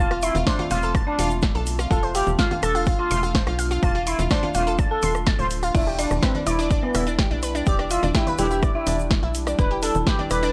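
A smooth, warbling synth lead carries the melody through this driving, hypnotic melodic techno excerpt at 125 BPM, backed by an eerie inharmonic bell, a deep, moody pad, bright detuned pluck arpeggios, a tight, dark sawtooth sequencer bass with tube saturation, a house kit of congas, crash, warm hats, rim click and punchy snare, a grainy egg shaker, a punchy up-front kick entering at 0.5 s, and very quiet brassy stabs, with the synths, bass and kit pumping around the kick as the chords move from F/E to Em7 at 5.7 s in a gritty hardware recording.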